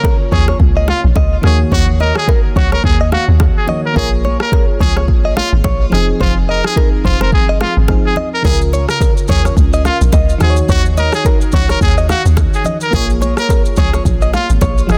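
Mellow and hypnotic, this afrobeats groove in Bb minor moves at 107 BPM in 4/4 with a swung sixteenth-note feel, cut from a longer piece. A brilliant, punchy trumpet carries the melody with vibrato and scooped notes, sitting present and forceful in a pop-style solo role with digital delay. Beneath it, a glassy FM electric piano with bell-like attack and chorus voices chords cycling through Db6, Ebm7, Bbm7 and Fm7, while a bright, clean, direct-recorded electric guitar picks a compressed riff through digital delay until 14.8 seconds. The electronic afro-pop drum kit lays down a deep kick, rim click and shaker, with soft clipping on the snare, and close, dry bongos and congas played with hard hands sit in the background. A dark, round log drum bass enters at 0.3 seconds and fills the low end with percussive, decaying notes, and an opening break runs until 8.4 seconds. The mix is dry with little reverb, and the master is dense and heavily limited in a modern style.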